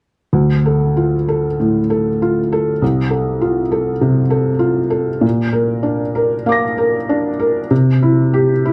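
Neoclassical minimalist piano in a melancholic, reflective mood: a short fragment of a longer piece in which a felt-muted upright piano plays alone from 0.3 to 8.7 seconds, moving with a rubato feel through Dm, F/C, Bb and C. The piano sits up front with a soft, mellow, intimate tone, its thin felt lending a hushed quality across a range from low bass to high treble. A moderate studio ambience surrounds it, and lossy compression artefacts colour the sound.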